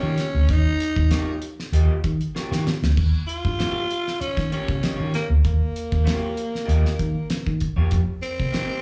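A live club recording with light reverb carries this playful funk fragment at 97 BPM, where a raspy, growling tenor saxophone with scooped notes leads up front over a twangy, slightly broken-up electric guitar through a small old amp, a round, foam-muted vintage fingered bass, and a damped 70s drum kit with a fat snare and dark cymbals that enters at 0.2 seconds and plays a fill from 2.3 to 3.0 seconds, the harmony moving from Eb9 to F9sus4 at 7.9 seconds.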